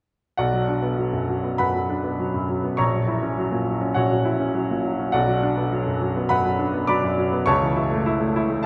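The rhythm moves with rubato over a 4/4 pulse near 102 BPM, giving this brief cut from a longer classical piano study a stormy, passionate surge. A solo grand piano plays from 0.4 to 8.7 seconds, ranging from A#1 low in the bass up to D6. Its sound is clear and present, placed up front. The harmony sits in B minor, moving from Bm to F#7/A# at 2.8 seconds, back to Bm, then to A/C#. A wet cathedral reverb with a 6.1-second tail surrounds the piano in a church or concert hall space, and the top end is rolled off above 10.6 kHz.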